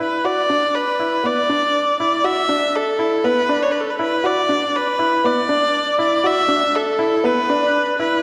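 A scoring-stage reverb with a 1.6-second tail gives this short electronica clip a wet, spacious glow. At 120 BPM in a straight 4/4, the passage builds over a single B minor chord, and the mood is hopeful and luminous. A baby grand piano plays a polished, present riff in the register from B3 to F#4 and stops at 8.1 seconds. Above it, a single bowed viola carries the melody from A4 to E5, close and intimate, with a soft attack, light vibrato and an airy sul tasto tone. Both instruments sit up front, and the viola's warm voice leads the piece until it breaks off at 8.2 seconds, as if cut from a longer work.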